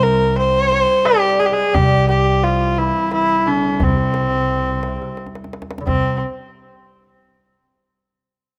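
A straight 3/4 pulse at 87 BPM carries this stately, passionate Persian modal fragment in C dastgah homayun, tuned to A4 = 439 Hz, with a bright, nasal, earthy kamancheh bowing the melody up front with light vibrato and portamento. Beneath it, a delicate fingerpicked lute on doubled gut strings plays a quiet second line, a woody, growly pizzicato upright bass anchors a low C, a warm bowed cello holds an expressive, smooth-topped drone in the background until 5.9 seconds, and a deep, close and dry tombak struck with hard hands plays throughout, adding a fill from 5.2 to 5.9 seconds. The rough home-demo mix has light reverb and studio ambience.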